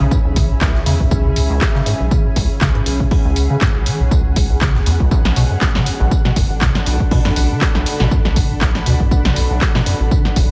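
A rubbery, resonant acid bass riff, treated with overdrive, subtle chorus and a diffuse delay, opens this trippy, gritty acid house excerpt at 120 BPM in C# phrygian together with a round, wave-folded analog bass sitting in the background and a blurred, bright granular cloud pad, all three pumping against an up-front, tape-warm electronic kick that arrives at 0.1 seconds alongside a very quiet, overdriven sampler-style kit of hi-hat, snare and tambourine, while a punchy analog drum machine adds handclaps, hi-hat and snare from 0.4 seconds over swung sixteenths, with the chords moving from C#m7 to Bm7 at 5.1 seconds in a light digital ambience.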